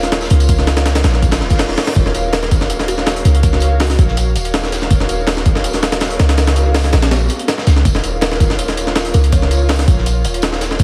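Drum and bass with a jungle edge at 163 BPM in Eb minor, this nostalgic yet frenetic passage rides on a gritty, overdriven sampler-style kit with a thumpy kick up front, layered over a crunchy, rolled-off breakbeat kit in the background and a deep, boomy 808-style bass. An airy, breathy pad with chorus sustains chords moving from Bbm/Eb to Ebm9 and back, while a reverse cymbal sweeps in at 1.4 seconds and a woody, hollow kalimba with dub echo plucks short phrases from 2.3 seconds and again near 8.2 seconds. Light studio reverb, heavy radio-style compression and vinyl crackle lend the whole short cut a worn, lo-fi patina.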